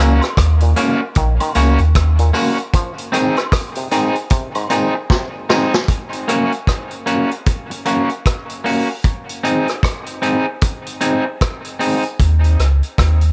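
A heavy, spacious dub reggae groove opens with a round, deep sine sub bass, a slightly broken-up, twangy electric guitar carrying the chords under harmonic tremolo and dub echo, and an overdriven auto-wah clav playing stringy arpeggios in the background. The vintage drum kit comes in at 0.2 seconds, up front with a gritty, saturated sound, a tight kick, a medium-tuned snare, rim clicks and hi-hat, and a rolled-off top, while a distant woodblock and tambourine part with maracas and group handclaps echoes in a large room behind it. The sub bass drops away at 2.3 seconds for a long break, and the clav and hand percussion fall silent during a drum fill near the end of the first section. The guitar and drums carry the second section on their own, with a swung sixteenth-note feel, until the sub bass returns at 12.2 seconds for the closing moments. Light studio reverb adds a sense of space to this excerpt, which is cut from a longer piece.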